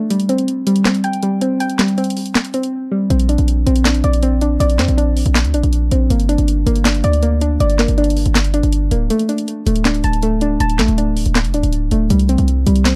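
A half-time trap groove at 160 BPM in 4/4 drives this melancholic, dark hip hop excerpt, cut from a longer piece. A soft, round pluck opens at 0.0 s with gentle arpeggios between G3 and A5, its triangle, sine and sawtooth blend sitting up front and colored by chorus, a low-pass filter sweep and tape echo. The electronic trap kit enters at 0.1 s with a sharp snare, bright hi-hats and handclaps carrying a tape-warm character, and the opening break ends in a brief silent gap from 2.7 to 3.1 s. At 3.1 s a hard-hitting 808-style bass lands, punchy and heavy with a fast attack and decaying sine tone reaching from D1 to F2, placed prominently in the mix. The harmony moves from C5 through Bbadd9 and Gm to D5 before returning to C5, and a short muted kick around 9.1 s briefly opens space in the beat. Light reverb and a dark, warm production give the whole track a moody, enclosed feel.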